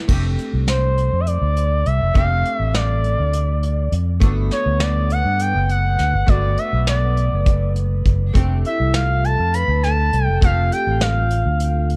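Progressive instrumental band music in 7/8 at 203 BPM counted in eighths, with a straight feel and a bright, intricate mood, cut from a longer piece. A soft brush drum kit sits up front with a punchy kick, a medium-tuned snare, hi-hat and crash in a small, roomy space that still sounds distant, while a round, amped fingered electric bass holds the low end beside it. An archtop guitar, miked and amplified, plays clean, picked, compressed accompaniment with a dark hollow-body tone, double-tracked and lying low in the mix with plate reverb. From 0.7 seconds an expressive sawtooth lead carries the melody up front, smooth and sustained with a soft attack, vibrato and portamento, dressed in chorus, plate reverb and digital delay. The chords move from F6 to Gmaj7 at 4.2 seconds and back to F6 at 8.4 seconds, under a dark production with light reverb. At 8.7 seconds a vibraphone struck with medium hard mallets enters as a quiet second line, metallic and ringing with slow motor vibrato in a boxy small room.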